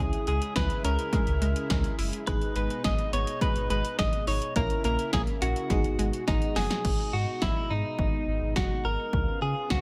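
Synth-pop in G# minor at 105 BPM, this cool, nocturnal passage is cut from a longer piece and moves in a straight 4/4 over chords from C#m through G#m and A#dim to G#m7, landing on C#7 near the end. A clean, picked electric guitar, recorded direct and compressed, carries the melody up front with a bright edge and a trail of delay. A punchy analog drum machine, tape-warm and re-recorded in a small room, drives the groove with kick, snare, hi-hat and crash soaked in gated reverb, while a deep, full sub bass with octave holds the low end with a mellow, sustained tone. Behind them, a glassy FM electric piano with bell-like attacks shimmers through chorus and phaser, and a round, detuned analog pluck spins arpeggios through chorus and delay, both dropping out after a drum fill around 6.8 seconds. From there a lush, airy unison pad keeps its thick sustained chords under the guitar, bass and drums in a dry, close mix until 9.8 seconds.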